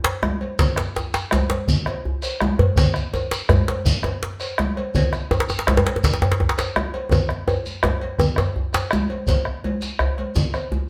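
A drum fill opens this driving, festive West African traditional drum ensemble excerpt in 12/8 at 111 BPM as cowbell and djembe begin, quickly joined by a round, close bombo, bright, thin-skinned congas, a tight, cracking second djembe up front and a grainy, distant shekere alongside the metallic, saturated cowbell, with another fill arriving at 7.1 seconds before the first djembe stops at 8.9 seconds, the group playing together in one room under a wet studio reverb.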